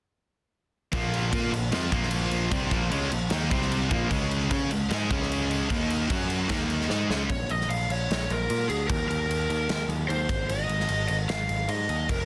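A driving, straight 4/4 hard rock pulse at 150 BPM in Bb minor opens this aggressive, heavy excerpt, where a punchy, big-room drum kit with bright cymbals and a picked, up-front electric bass push under three stacked riffing guitars (a bright high-gain distorted one, a double-tracked hollow-body semi-hollow one and a dark, sludgy one in the background) from 0.9 s until a drum fill at 6.9 s hands over at 7.3 s to an overdriven lead guitar through a small cranked amp with digital delay, all sitting in light reverb and a dense, heavily limited modern master.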